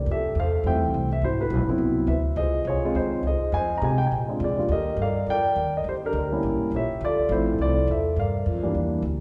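A brisk swing in 4/4 at 207 BPM drives this warm, relaxed jazz excerpt in F major, where a dark, mellow baby grand piano carries the melody with audible action noise and long sustain alongside a woody, thumpy pizzicato upright bass on gut strings, both up front in a wet recital hall reverb, moving through rich chords from Fmaj9 through Ab7alt and Dbmaj9 to close on Gm7 near 8.2 seconds.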